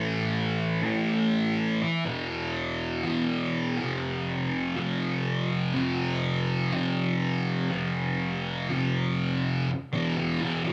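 Rock excerpt at 122 BPM in 4/4 with a straight feel, hypnotic and dark in mood. A thick, double-tracked fuzz electric guitar plays alone and up front from 0.0 to 10.7 seconds, its picked, distorted tone colored by phaser and moving through power chords on A, E and F. A moderate large-studio reverb gives the guitar a sense of space.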